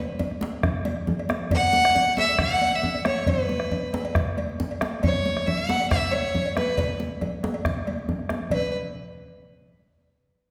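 This festive, earthy West African drum ensemble piece, cut from a longer performance, opens at 0.2 s with bombo, congas, djembe and cowbell together at a straight 137 BPM in 4/4. The bombo is round and close, the djembe deep and warm, and the high-tuned congas bright and damped with a thin skin, struck with hard hands in a small-room sound. A metallic cowbell sits in the background behind the drums. At 1.5 s a single bowed fiddle enters up front and carries the melody between B4 and F#5, its tone rich, focused and slightly boxy with a light vibrato. The whole group plays on until 8.7 s in a resonant recital hall whose long reverberation frames the close, dry bombo, djembe and cowbell.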